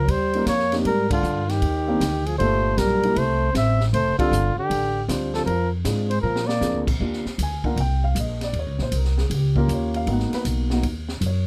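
A swung 4/4 groove at 156 BPM drives this sophisticated, playful small-group jazz fragment, anchored by a growly, thumpy pizzicato upright bass up front and an open drum kit with dark cymbals, a high-tuned snare and a boomy kick, which adds a fill at 6.2 seconds. A warm flugelhorn with light vibrato and scooped notes carries the melody while a breathy, distant trombone whispers a second line beneath it, both falling away at 6.9 seconds as a mellow, woody upright piano with long sustain continues its accompaniment through the Ebmaj7, Eb7 and Abm7 changes. The sound is close and detailed, with little reverb.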